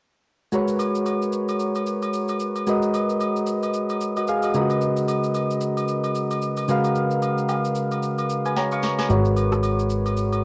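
A lightly swung sixteenth-note groove in 4/4 drives this hypnotic, soulful amapiano fragment, cut from a longer piece. Soft, round electric-piano-like synth keys carry the harmony from 0.5 seconds, mellow and chorused, sitting up front as they move from G#m11 to C#13sus4 and back. Beneath them, an electronic shaker, rim click and sharp produced snare tick along at a low level, joined by acoustic agogo bells and woodblock with a vintage, band-limited character. A drum fill arrives at 8.6 seconds, and at 9.1 seconds a punchy, funky analog bass drops in with a saturated, wave-folded pluck that decays. The whole track has the intimate feel of a home cassette recording in a moderate booth ambience, with a faint tape haze on the keys and drums.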